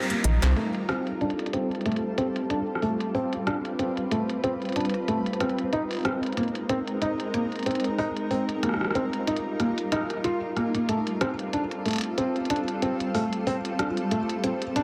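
Eerie and glitchy, this IDM excerpt moves at 93 BPM in 4/4 with a light swing on the sixteenths, cut from a longer piece. A granular cloud pad holds blurred, evolving sustained chords throughout, built from suspended ninth harmonies that move from F9sus4 to G9sus4 and Bb9sus4 before circling back. Alongside it, a felt-muted upright piano plays soft, intimate arpeggios through a low-pass filter and tape echo, its audible action noise giving it a vintage character. Both the pad and the piano carry a filter sweep from 0.6 seconds to the end. An industrial drum kit of crisp hats, rim click, toms and a clanging, softly clipped snare sits low in the mix, with a short fill just after the opening accent, while a round, deep analog bass appears only briefly between 0.2 and 0.5 seconds. A lush hall reverb and a dense, heavily limited master give the whole a modern sheen.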